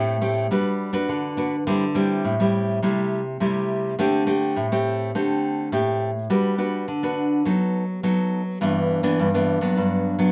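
This samba clip, cut from a longer piece, moves at 104 BPM in a straight 4/4 with a bittersweet, yearning mood. A solo fingerpicked nylon-string guitar, classical in character with fresh strings and audible finger squeak, sits up front from 0.0 to 10.3 seconds. It drifts through Gmaj7, D9sus4, Am7/C and B7/F# before settling on Em7/G. A wet small-room reverb and a slightly distant vantage give the guitar's warm tone a soft airy halo.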